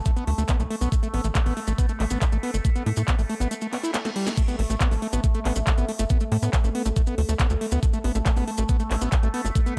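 A driving 139 BPM psychedelic trance groove in straight 4/4 is anchored by a knocking, up-front electronic kick, a layered kit with cracking snare, metallic hats, handclaps and crash, grainy close maracas, and a tight, punchy sequencer bass with a filter pluck and wave-folded bite. Over a resonant, overtone-sweeping drone held on an A5 chord, a screaming, squelchy acid riff with distortion, chorus and delay gives this alien, dark-toned excerpt from a longer track its aggressive edge. A break at 3.5 seconds brings a background reverse cymbal and a drum fill before the drop lands at 4.4 seconds.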